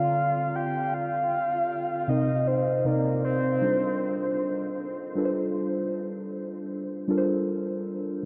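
Soaked in a huge, dreamy reverb, this moody late-night R&B fragment at 78 BPM with a light 16th-note swing sets a round, octave-layered synth lead carrying the melody with chorus, phaser, vibrato and a diffuse ambient delay until 4.7 seconds over muted, warbling, vintage felt-like synth keys with chorus that carry the Dm7, Cm9 and G7sus4 harmony in decaying strokes through 8.3 seconds, all tuned to A4 = 436 Hz.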